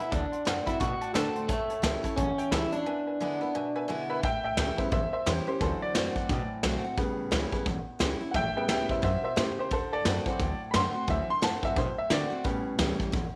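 A swung groove at 175 BPM drives this rollicking, upbeat rockabilly excerpt, with soft brushes on snare, hi-hat and a punchy kick sitting up front yet carrying a roomy, rolled-off sound. A woody, dark pizzicato upright bass holds down the low end beneath a bright, full-bodied picked steel-string acoustic guitar playing through a run of D7, A7 and E7 chords. A twangy, slightly broken-up electric guitar with tape echo carries the melody at the start, stopping at 3.9 s. From 4.2 s the clear upright piano takes a solo, intimate and polished, with long sustain and its key action faintly audible. The whole band sits in a moderate echo chamber reverb with a small room ambience.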